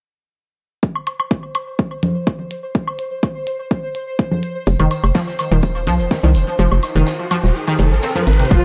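A hollow, bouncy FM bass knocks up front in this hypnotic, clinical slice of minimal techno, entering at 4.7 seconds with punchy, fast-decaying notes that pump against the kick. Before it, a deep, overdriven electronic kick drum sits forward in the mix. Clicky, overdriven hi-hats, layered woodblock and congas with tape echo, and a bright, pulsing gated texture with chorus and slow-blooming sustain surround it. Alongside the bass arrives a juicy, squelchy blip pluck, a detuned sawtooth riff with a resonant filter snap, lush chorus and analog delay, plus a crunchy breakbeat kit of hi-hat, high-tuned snare and tambourine, and a grainy tube shaker, both tucked well into the background. A riser builds from 5.8 seconds, the kick drops out at 6.6 seconds, a drum fill follows, and at 8.5 seconds a rich, earthy chamber string section appears briefly, distant and bowed with light vibrato. The mix is echo-heavy with light reverb, and the piece is cut from a longer track.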